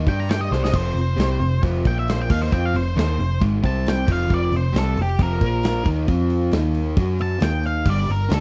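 Swaggering and driving, this short cut from a longer piece is blues rock in the power-trio mould with a southern rock streak, moving at 135 BPM in a straight 4/4. An overdriven electric guitar carries the riff, its bright, double-tracked, compressed tone sitting up front with a touch of spring reverb. Beneath it, a vintage picked electric bass sounds dark, round and foam-muted, amped and equally forward in the mix. An octave-fuzz lead guitar takes a solo from the opening moments, its dark, distorted tone trailed by slapback echo and sitting a little lower than the other parts. A big acoustic rock kit of kick, snare, hi-hat and crash drives everything, with a medium-tuned snare, tight kick and rolled-off top, and it drops a fill at 0.5 seconds. The sound is dry and close, like a 1970s studio session, as the chords shift through power-chord moves such as G5, F5 and Bb5 alongside Cm and Fm7.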